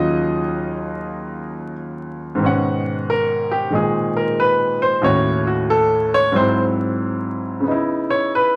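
Smoky and moody, this short cut from a longer solo jazz piece swings at 91 BPM in G# minor, carried entirely by a concert grand piano with a deep bass, smooth, vintage tone that sits up front. The piano moves through rich extended chords such as Ebm9, G#m11 and G#7b13, and at 2.4 seconds the music shifts into a new section where it takes a solo until 8.6 seconds. A wet studio reverb and a layer of vinyl crackle give the sound an aged, late-night glow.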